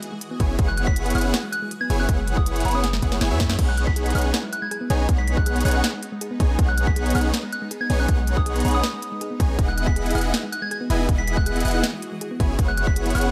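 Lush and euphoric, this half-time future bass excerpt in B major moves at 160 BPM, opening with a very quiet, shimmering ethereal pad and a trap kit of sharp snare, crisp hats and crash before a dark, tine-like thumb-piano pluck arpeggiates in the background with 12-bit grit, chorus and delay. From 0.4 seconds huge detuned supersaw chords pump against a hard-clipped electronic kick and a deep, boomy 808-style bass sitting up front, moving from F#9sus4 through B69 to Emaj9. A soft, pure FM bell melody with phaser and delay floats high above, and a drum fill at 2.8 seconds sets off the first full chord change, all within a light digital ambience.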